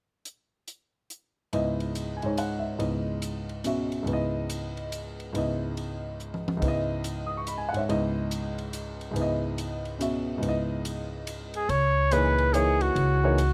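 Modal jazz in a swung three-four lilt, cool and searching in mood, cut from a longer piece. A compact cocktail drum kit sets things going alone, dry and low in the mix with dark cymbals and a punchy kick across hi-hat, ride and toms, and it drops in a short fill at 6.2 seconds. From 1.5 seconds a clear concert grand piano takes up the accompaniment on a C#m9 chord, natural in tone with deep bass and short sustain, sitting up front. At 11.6 seconds a breathy trumpet enters with the melody, a smooth-topped solo voice with light vibrato and a punchy attack, joined almost at once by a woody pizzicato upright bass on steel strings, both placed up front. The sound is intimate and detailed, captured with close microphones in a nearly dry room.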